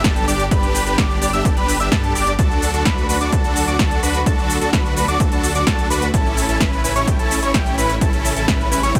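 This short cut from a longer festival progressive house track has a light reverb and a punchy, overdriven drum sound, with an euphoric, anthemic mood at 128 BPM in a straight 4/4. An electronic kick drum, layered and re-recorded in a large room, drives the groove alongside a big-room dance drum kit of crisp hi-hats, shaker and a punchy snare, both treated with overdrive. Huge, bright supersaw chords carry the riff between C#4 and E5 with sidechain pumping and tape echo, while a thick, nasal unison lead plays arpeggios high up, from G5 to E6, with vibrato, tape echo and the same pumping. Underneath, a detuned saw bass sits in the background, mellow and saturated with chorus, and a smooth, distant studio string section holds sustained bowed chords that also pump with the sidechain. All six parts play throughout the nine seconds as the harmony moves from G to D at 2.4 seconds and to A at 6.1 seconds.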